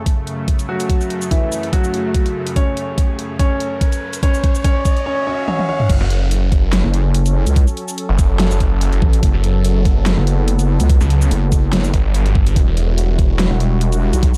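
A dark, warm production with light digital ambience opens on a lush supersaw pad pumping under a low-pass filter, while an overdriven, knocking kick sits up front beside a dubstep kit of huge snare, bright hats, shaker, crash and toms in a small room. This excerpt of menacing, chaotic heavy wobble dubstep at 144 BPM in F# phrygian, half-time with a light swing, builds with a clear, intimate grand piano melody carrying delay and audible action noise, plus a background riser and swell from 2.0 to 5.9 seconds, and drum fills. At 5.9 seconds the drop hits as the piano gives way to a chorused, saturated wobble bass and a snarling, growling distorted saw bass with a moving notch, churning with the pad over F#m before shifting to Emadd9 at 12.6 seconds.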